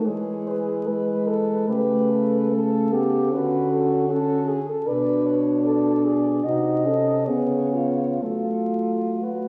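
A horn quartet begins together in a melancholic, elegiac classical passage in F# minor, moving in a rubato 4/4 at around 59-78 BPM. A clear, lightly vibrato-coloured horn with a vintage tone carries the melody over a close, soft-attacked, mellow second line, a dark, up-front accompanying horn and a distant, roomy bass horn. The harmony drifts from E through Dmaj7 and Cdim7 to C#7 before settling on F#m, heard from further back in a recital hall's lush reverb with vinyl crackle across the 9.5 seconds of this brief passage.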